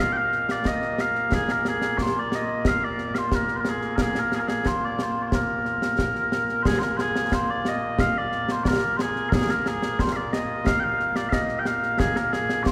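Mellow small bagpipes carry a sweet, continuous solo melody with vibrato, up front from the very start, in this proud, ceremonial excerpt of Scottish traditional pipe music in a straight 2/4. Concert snare and bass drum join at 0.3 seconds, close and acoustic with bright cymbals, as the same strain is played twice through to 12.7 seconds. A long, wet church reverb surrounds the performance, lending it the resonance of a church or concert hall.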